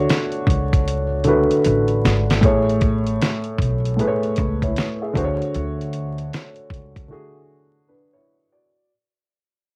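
Nostalgic and cosy, this lo-fi hip hop excerpt sets a dark, mellow upright piano, up front with audible action noise, a low-pass filter, cassette tape character and plate reverb, over a woody pizzicato upright bass and a gritty, compressed sampler-style drum kit with a thumpy kick and fat snare, also run through cassette tape. A drum fill from 0.9 s leads into a shift from Dmaj7 to Amaj7 as the fade-out begins at 2.4 s. Bass and drums stop at 7.1 s, leaving the intimate piano alone amid the vinyl crackle and moderate booth ambience of a home cassette recording.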